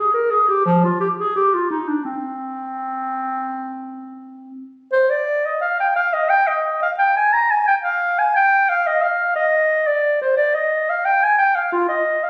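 Rubato and unevenly pulsed in 4/4 at about 87 BPM, this grave yet flowing fragment of a longer baroque-style classical fantasia in C minor sets a lone warm, soft-attacked clarinet up front, ranging from F3 to Bb5 and shifting into a new section at 4.9 seconds, all heard through the wet echo of a stone room in a compressed phone recording that runs to 12.3 seconds.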